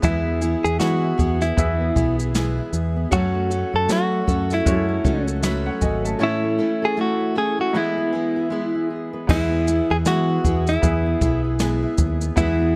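A relaxed 78 BPM groove in 4/4 with a gentle sixteenth-note swing carries this carefree, easy-going acoustic pop excerpt in E major, where a clean, compressed direct electric guitar sings the melody up front over a punchy fingered electric bass, a full-bodied picked dreadnought acoustic, a fingerpicked acoustic playing arpeggios in the background with slapback echo, a brilliant, woody upright piano with audible action noise, and a brushed drum kit with dark cymbals, boomy kick, snare and shaker, all in a dry sound as the chords move from E to F#m to A and back to E.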